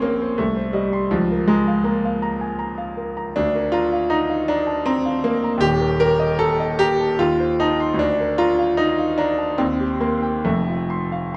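A wet recital hall reverb surrounds this short excerpt, its upper reaches gently rolled off to give a soft, rounded sound. It is a romantic classical character piece for solo piano in three-four time, played with a flexible, rubato feel. The grand piano sits up front and sounds smooth and vintage in tone, ranging from deep bass notes up into the treble. Shadowed minor-key harmony at the opening gives way to a brighter major colour at 3.4 seconds, lending the passage a hopeful, warm mood. The progression moves through rich seventh and inverted chords before settling on a dominant harmony at 10.5 seconds, as though the phrase is carrying on into more of the piece.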